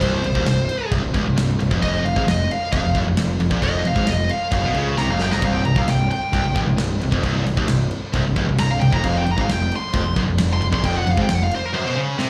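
Heavy metal at 133 BPM, dark and crushing, this live club excerpt centers on an up-front, high-gain lead guitar solo with slapback echo. Beneath it, two bright, picked distorted rhythm guitars (one of them tight and echoed) churn a low riff over Cm and F5, alongside a growly, overdriven fuzz bass and a big acoustic drum kit with a punchy kick, medium-tuned snare and crashes. After a drum fill at 5.0 seconds, a very quiet, double-tracked fuzz guitar joins at 5.4 seconds.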